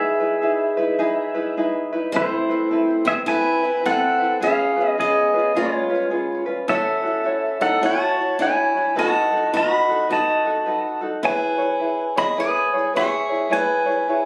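Captured on a phone in a small room, with a short club reverb and compression, this languid, dreamy Hawaiian piece swings gently at 106 BPM in 4/4 over a progression that opens on Emaj7. Up front, a bright, clean electric pedal steel guitar carries the melody with fingerpicks, slide and volume swells, while a light, fingerpicked tenor ukulele gives close, warm accompaniment. From 2.1 seconds, a boxy, picked swing-style acoustic guitar adds a quieter second line tinged with tape echo.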